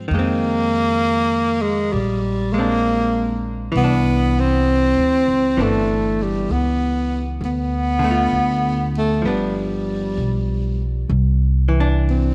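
A romantic, late-night jazz ballad in C major, this excerpt moves at 66 BPM with a swung 4/4 feel, cut from a longer piece. A close-miked tenor saxophone carries the melody up front with light vibrato and a warm tone, turning to a solo at 11.1 seconds, while a woody pizzicato upright bass sits forward beneath it and a dark, clean, compressed hollow-body archtop guitar picks the accompaniment further back. The harmony drifts from Fm7 and Bb9 toward Cmaj9, Dm and G7 before settling on Cadd9, all bathed in a moderate echo-chamber reverb.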